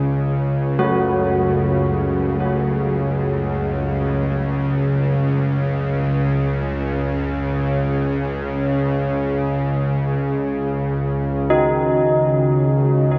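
A tense, string-like drone opens this ominous dark ambient excerpt, sitting up front with a bright, detuned sawtooth edge, a noise layer, vibrato and its own reverb as it sustains in the low register. At 0.8 s old church bells enter with bronze, clangorous arpeggios, their worn iron clapper and minor-third overtone ringing and beating through a delay. The harmony rests on a suspended fourth chord until 11.5 s, when it shifts to a suspended second and a metallic bronze singing bowl, struck with a wooden striker, appears barely audible with slow, meditative beating. An enormous wet reverb gives the whole a vast, cavernous space, captured on cassette tape. The passage is cut from a longer piece, so it ends mid-flow.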